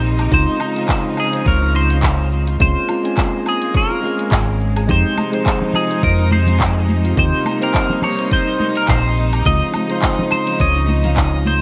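A round, hollow-body fingered electric bass sits up front in this smooth, relaxed sunset-chillout excerpt at 105 BPM with a light 16th-note swing, where a clean, scooped picked electric guitar carries the melody through chorus and delay over a bell-like tine electric piano, biting bowed strings with vibrato holding chords in the background, and a ringing fingerpicked harp playing arpeggios, all moving through Dbmaj9, Bbm9/Db, Fm7 and Cm7/Eb, while a punchy electronic kick from 0.3 s joins a deep house kit of dark hi-hat, handclaps, cabasa and woodblock, soft-handed congas arrive at 5.2 s, and a calm, glassy drifting-harmonics texture fades in at 5.6 s, all framed by light reverb and bright 1980s-style digital production.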